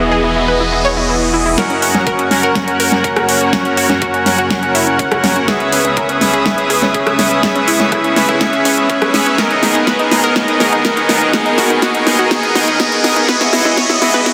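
Progressive house in a euphoric, hopeful mood, cut from a longer piece. Sustained chords from a clear, bowed studio string section, a round detuned analog pluck arpeggio with chorus and dub echo, up-front smooth supersaw stabs with a tape tinge and low-pass filtering, a background riser and a glassy, drifting harmonics texture fill the opening, while a thick, saturated sub bass sounds only until 1.6 seconds. From there a knocking electronic kick and an overdriven pop kit with a fat snare, metallic hats and a small-room sound drive a build-up with a drum fill, the hats pumping under sidechain, all set in a lush digital hall within a dense, heavily limited master.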